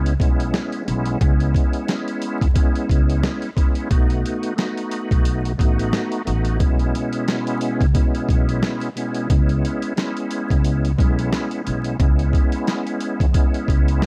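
A reedy tonewheel organ with slow rotary swirl and chorus vibrato opens alongside a woody pizzicato upright bass, joined at 0.1 seconds by a gritty, pitched-down sampler drum kit with a thumpy kick, in a dark, reflective boom-bap hip-hop groove at 89 BPM with a swung feel, moving from E6/B to B7 and back under vinyl crackle and warm digital ambience.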